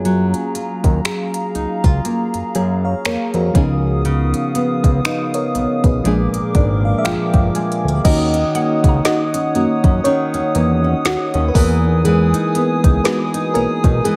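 An FM electric piano with tremolo accompanies the opening of this slow, sensual contemporary R&B excerpt at 60 BPM. Its dark, full-bodied tone carries a fill from 6.0 s and then a solo from 8.0 s, as the harmony moves into Eb phrygian. Beneath it, a fingerpicked nylon-string guitar plays classical-style arpeggios through tape echo, with the occasional finger squeak audible. A fat, saturated analog bass sits up front alongside a smooth drum kit of soft kick, woody snare, hi-hat, finger snaps and crash, with a light swing on the sixteenths in 4/4. A hollow, flute-like pad holds chords with chorus through Gbmaj9, Db9, Bb7, Ebm7 and Emaj7, and from 8.6 s a very quiet, round synth pluck with chorus and phaser adds a mallet-like texture, all in a dry, close sound that suits the late-night mood.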